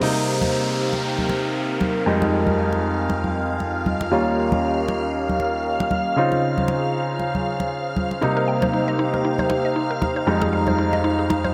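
Deep house at 117 BPM with a 16th-note swing, moody and late-night, built on a soft, felt-muted upright piano playing up-front stabs through vintage 12-bit sampler grit and dub echo, bright hard-hand congas, a detuned sawtooth analog pad under a filter sweep with chorus and tremolo, a warbling lo-fi tape-like pad, a shimmering string-machine violin texture, an electronic downlifter in the opening 4.1 seconds, and a woody FM mallet pluck arpeggiating from 8.2 seconds as the Cm7, Fm7, Eb9 and Dbmaj7 progression returns to Cm7 and Fm7, all set in a lush hall reverb in this excerpt from a longer piece.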